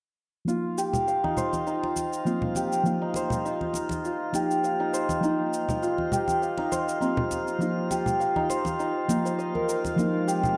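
Swung sixteenths at 101 BPM in 4/4 carry this hypnotic, meditative organic downtempo excerpt, where a ringing, hammered santur plays up-front arpeggios through a low-pass filter and shimmer reverb over a deep, mellow chord stab with a filter sweep and phaser moving from Cm7/F to Fm7 at 10.0 seconds, joined by an electronic layered shaker, bright close congas, a glassy drifting texture of overtones, and a nasal bowed-like drone that enters at 10.2 seconds, all set in a dreamy mix soaked in plate reverb.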